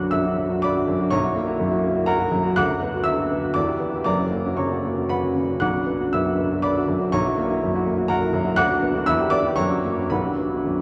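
Stormy and passionate, this short passage is a romantic character piece for solo piano in B minor, moving in a flexible, rubato 3/4 at roughly 110 to 128 BPM. A single upright piano carries everything, sitting up front with a woody, smooth, vintage tone and spanning a broad range from deep F#1 up to F#6. The instrument is tuned slightly low, to A4 = 435 Hz. Its harmony circles restlessly through B minor, F#7 over a B bass, Em and F#, returning to the tonic at 5.6 seconds before settling on B minor at 10.1 seconds. A long, wet cathedral reverb with a 6.5-second decay surrounds the piano, and the overall production is dark and warm. The recording lasts just 10.8 seconds, cut from a longer piece.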